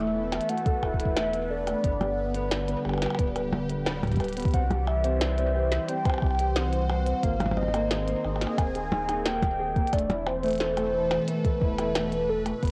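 A soft, up-front electronic kick enters at 0.7 seconds, anchoring this playful, intricate IDM fragment at 89 BPM. Tiny snares, clicky hats and percussion blips from a glitchy kit, a round sine sub bass, a swirling, detuned phased pad with sidechain pumping, and a mellow felt-muted upright piano with audible action noise playing tape-echoed arpeggios all support a velvety synth lead melody colored by chorus, tremolo and analog delay. Chords move from Esus4 through G, C and Abadd9, and the whole piece carries the intimate grain of a home cassette recording with a moderate spring reverb.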